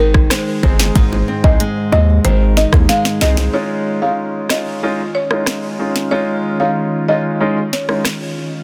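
Bouncy and sunny, this short dancehall cut moves at 93 BPM in a straight 4/4, opening on an Ab chord before shifting to Dbadd9 at 3.5 seconds. A buzzing, woody marimba carries the melody with a touch of digital delay, while a fingerpicked nylon-string guitar, complete with finger squeak, plays arpeggios through the first half and stops at 4.1 seconds. Underneath, a punchy, saturated 808-style bass hits hard up front until 3.5 seconds, and an electronic afro-pop kit with a deep kick, a sharp, softly clipped snare, rim clicks and hi-hats drives throughout, rolling into a drum fill just before the chord change. A polished grand piano supplies accompaniment with a pumping sidechain feel, joined early on by very quiet, low-tuned bongos. From 4.2 seconds a glassy, ethereal FM pad adds sustained, chorused chords, all within a light small-room ambience and a dense, heavily limited modern master.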